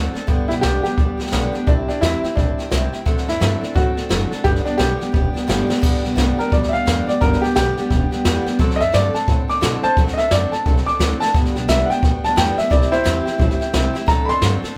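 A clear upright piano leads this rollicking, retro rockabilly excerpt, its intimate, short-sustained tone carrying audible action noise as it carries the melody and then takes a solo from 5.8 seconds to the end. The tempo is a brisk 174 BPM in 4/4 with a swung eighth-note feel, in G major and tuned slightly under standard pitch, cycling through G, C and D7. A bright picked steel-string acoustic guitar with fresh strings and a full-bodied dreadnought sound picks out the accompaniment, occasional finger squeak showing through. Underneath, a pizzicato upright bass on gut strings gives a dark, thumpy low end. The brush drum kit sits up front with dark cymbals, a medium-tuned snare and a boomy kick, dropping fills at 5.7 and 11.2 seconds. The band sounds as if playing live together in one small room, touched with light reverb.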